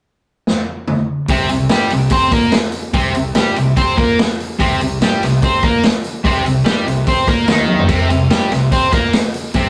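Blues rock in the power-trio mould with a southern rock lean, this heavy, smoky excerpt from a longer piece moves at 145 BPM in a straight 4/4 and sits in C minor. A vintage acoustic drum kit opens with a fill at 0.5 seconds, its punchy kick, medium-tuned snare, hi-hat, toms and crash cymbal sounding natural and up front with a rolled-off top. At 1.3 seconds the band lands on a C minor chord as a sludgy, overdriven electric guitar riff enters, picked and double-tracked, spanning C3 to C5 and placed up front. A fuzz-laden fingered electric bass arrives at the same moment, bright and growly, running from C2 to C3 and sitting in the background. Another drum fill comes at 7.7 seconds, and the whole take carries the rough feel of a rehearsal-room recording wrapped in a wet small-room reverb.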